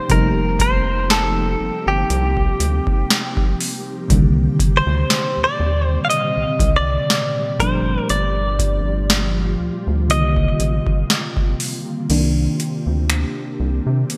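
Contemporary R&B at a slow 60 BPM in C dorian, this excerpt carries a longing, late-night mood with a gentle 16th-note swing and a bright 1980s-style digital sheen. A clean, direct-recorded electric guitar carries the melody up front with a twangy, picked tone, touched by subtle chorus and digital delay, until it drops out at 11.6 seconds. Beneath it, a mellow FM electric piano supplies soft, round accompaniment with chorus, while an ethereal, airy pad holds sustained chords through ensemble chorus, built-in reverb and phaser. A rubbery, bouncy square-wave bass sits up front with a resonant filter pluck, and a booming analog drum machine drives the groove with a deep kick, crisp snare, metallic hi-hats, finger snaps and crash cymbal, all overdriven and wrapped in gated reverb. The harmony moves from F9sus4 through Cm7 and Gm7 to Cm9, and from 12.1 seconds the kick falls silent as the electric piano takes a short solo to close the passage.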